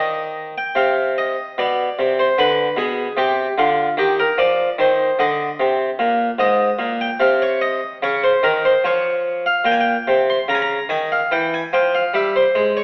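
Classical, baroque-style suite movement in C minor: a grave, solemn harpsichord solo moving at a rubato 74 BPM in 4/4, cut from a longer piece. The Flemish-style harpsichord sits up front, airy and brilliant with plucked octave strings, ranging from Ab2 to C6 through harmonies that drift from C minor toward Ab, Db and a rootless Dbmaj7#11 by 11.3 seconds. A wet recital-hall reverb surrounds it, while a telephone-like sound narrows the whole recording.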